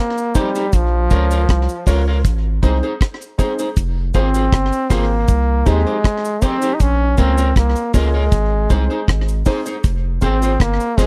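A dry, close 1970s-style studio sound frames this hypnotic, serious roots reggae excerpt in F minor at 79 BPM, where a bright, up-front trombone carries the melody through tape echo over a tight-kicked acoustic drum kit with hi-hat and rim click, a round, deep dub sub bass entering at 0.7 s, a woody, slightly detuned upright piano stabbing in the background, a dark, slightly broken-up picked electric guitar with tape echo, and a faint cabasa, all moving through Cm, Bbm, Ab and Fm.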